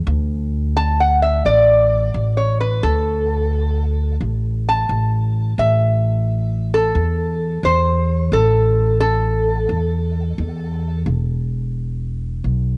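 A loping swing at 87 BPM in 4/4 gives this acoustic country blues duo a swaggering, laid-back strut, with a woody pizzicato upright bass up front from the very start, moving over D5, A5 and E5 chords. At 0.8 seconds a lap resonator guitar enters and plays a slide solo with a steel bar and fingerpicks until 11.0 seconds, its metallic, nasal tone carrying a cassette-tape coloring. The fragment, cut from a longer piece, sits in light reverb with the dull, homespun top end of a cassette home recording.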